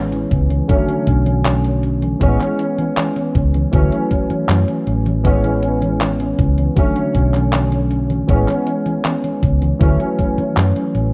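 Vaporwave with a woozy, dreamy mood, this short excerpt from a longer piece sits on a barky, clean tine electric piano, up front and treated with ensemble chorus and tape echo, cycling through lush major-ninth and rootless seventh chords. Beneath it, a dark, round hollow-body electric bass plays fingered lines, while a thumpy electronic kick and a detuned 8-bit drum machine tapping out congas, handclaps and hi-hat both carry a tape-softened, small-room character. The whole thing has the rough feel of a home demo dubbed to cassette, with a light reverb.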